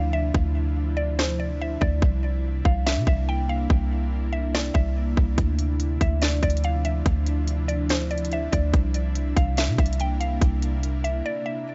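Crisp, up-front trap drums set the pulse of this hazy, spacious cloud-rap excerpt, with a hard-clipped kick and a sharp snare riding a half-time feel from 0.3 seconds. Beneath them, a soft, round 808-style bass with a deep sine tone and quick, decaying notes sits forward in the mix. An ethereal pad built from detuned sawtooth and triangle layers with a sub octave swells gently with slow attacks and long releases, holding mellow, airy chords. It is softened by ensemble chorus and its own reverb, and it pumps against the beat. Above it, a woody FM pluck with a faint noise layer plays a percussive melody through chorus and digital delay. The harmony alternates between Dm9 and C9, and the dry, dark-edged mix gives the piece a close, dreamy sound.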